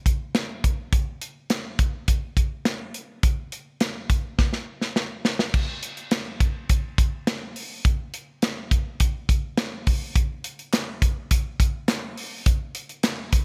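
Pop with a romantic, nostalgic mood in a straight 4/4 feel, this dry passage is carried by an up-front studio drum kit of punchy kick, medium-tuned snare, hi-hat and crash, mid-forward with a rolled-off top, which plays a fill from 4.4 to 5.5 seconds before moving into a second section, where a crisp group handclap, distant as if in a large room, sits in the background from 10.7 seconds.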